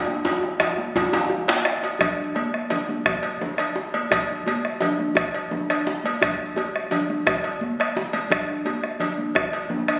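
West African traditional drum ensemble music, earthy and festive at 114 BPM in a straight 12/8, opens with a drum fill over the first 2.0 seconds, where a close, cracking djembe struck with hard hands sounds only until 1.6 seconds, while a deep, dark bombo heard close and dry, a metallic, up-front cowbell, ringing high-tuned congas with a vintage, band-limited tone and a second tight djembe set distant in a large room carry on to the end, all captured on a phone in a reverberant recital hall.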